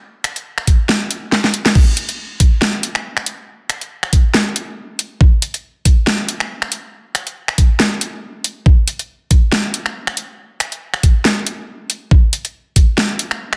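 A half-time dubstep groove in 4/4 with swung sixteenths drives this aggressive, chaotic excerpt. A dubstep drum kit of crash cymbal, finger snaps, metallic hi-hats and a huge, softly clipped snare comes in at 0.2 seconds and throws a short fill at 1.3 seconds, while a layered, knocking electronic kick enters at 0.7 seconds and sits forward in the mix. Both drum parts are up front with a tape-warm tone and studio reverb, set in light digital ambience under a dense, heavily limited modern master.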